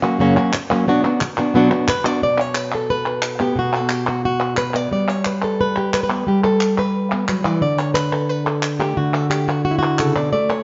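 A fingerpicked flamenco guitar and crisp palmas hand claps begin together, setting a mournful, passionate mood at a brisk 178 BPM in a straight 4/4. The guitar carries the melody up front, its acoustic tone warm and ranging from F#2 to D5, while the close, dry claps sit lower in the mix as percussion. The harmony opens on F# and moves to Bm, then at 2.2 seconds the chords drop away for a chordless passage before G arrives and then D. Both parts play through the whole short excerpt, which is cut from a longer piece. The band sounds as if it is playing live in one stone room, with a moderate reverb lending depth and a softened, rounded top end to the recording.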